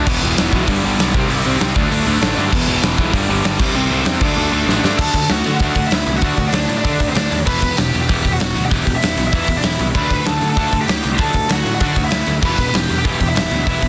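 A dry, dense and heavily limited mix carries this angry, urgent punk rock excerpt at 194 BPM in straight 4/4. An up-front acoustic drum kit with a punchy kick, fat snare and pumping stone room drives a bright, overdriven guitar riff, a second overdriven guitar tucked in the background until 5.0 s, and a growly, fuzz-soaked picked bass. After a drum fill at 4.7 s, a bluesy, distorted lead guitar takes the melody over chords moving between D and Em.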